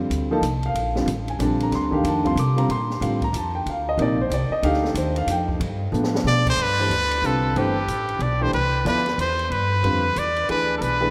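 A warm grand piano and a woody, dark upright bass open this spiritual, open modal jazz excerpt in a brisk 3/4 at 185 BPM, swung on the eighth notes and voiced over a Bbmaj9 chord. The piano sits up front with an intimate, long-sustaining tone and audible action noise, while the plucked steel-string bass anchors the low end and an acoustic jazz kit with dark cymbals, a high-tuned snare and a boomy kick plays crash, hi-hat, ride, snare and kick beneath them. A G7 chord arrives at 5.6 seconds, and a drum fill at 5.9 seconds leads into the entrance of a brilliant, punchy trumpet at 6.3 seconds. The trumpet carries the melody as a forceful, present solo voice with light vibrato and scooped notes, and shortly after it enters the key moves from Bb major to C major as the harmony shifts to Cmaj9, later settling on Dsus2. The whole performance is bathed in a cathedral reverb that places it in a vast, echoing space and gives it a drenched glow.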